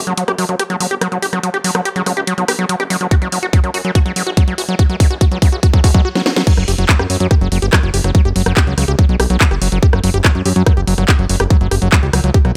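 A fat, sawtooth-and-square analog bass opens this intense, alien psychedelic trance excerpt at 143 BPM, joined almost at once by a squelchy, gritty acid bass riff, distorted and up front with sidechain pumping and tape echo. A filter sweep runs across the acid line through the build-up while a layered electronic kit with a cracking snare, claps, hi-hat, rim clicks and crash plays along, and at 3.1 seconds a tight, up-front electronic kick enters as the kit breaks into fills. After a brief break, the drop lands at 6.5 seconds over a steady F#5 harmony, all set in a digital ambience.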